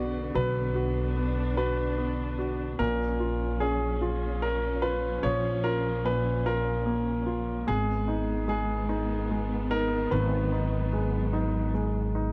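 An intimate concert grand piano carries the melody up front, its clear tone catching the faint noise of the action as it sings in a tender, swaying pop passage in 6/8, cut from a longer piece, until it falls away at 11.7 s. Beneath it, a polished baby grand fills in the accompaniment with a clear, present touch. A lush studio string section, bowed with expressive vibrato and portamento, holds sustained chords with a smooth top and a warm ensemble blend. A woody upright bass, plucked pizzicato on steel strings, sits close in the mix and anchors the low end. The harmony moves from Bm to A#m at 2.8 s and settles on G#m at 7.7 s, all within a dry, close 1970s-style studio sound lightly touched by reverb.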